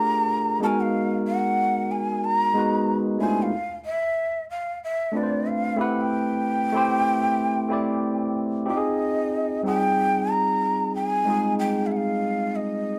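Caught in a large studio with a moderate reverb tail, this short excerpt of a longer R&B piece sounds like two players performing live together in one room. A bamboo shakuhachi carries the melody up front, its end-blown tone breathy and hollow, with vibrato, a crisp chiff on each attack and lifted highs. Beneath it, a tine electric piano plays the accompaniment through a combo amp, bright, clean and barky, sitting just as close to the listener. Both parts sound from the opening through to 13.0 seconds over a swung sixteenth-note feel, with the harmony drifting through minor ninth chords from Gm9 to Abm9, Dm9 and Am9. At 8.7 seconds a new section arrives on Fm9, keeping the sultry, late-night mood.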